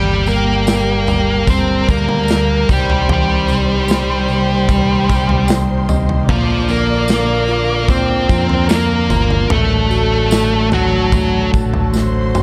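A bluesy, distorted lead guitar carries the melody up front in this heartbroken G minor pop ballad at 74 BPM. Beneath it sit a lush, distant violin section with expressive vibrato, clean tine electric piano, a majestic full pipe organ with brilliant mixtures and chiff, and a round, dark fretless bass, moving through Gm, Cm, Bb and D/A. A jingly, dry tambourine joins at 0.3 seconds and a background acoustic drum kit with a tight kick at 0.7 seconds, with an electric piano fill at 5.1 seconds and a drum fill closing this cut from a longer piece, all in a dark, warm mix with light small-room reverb.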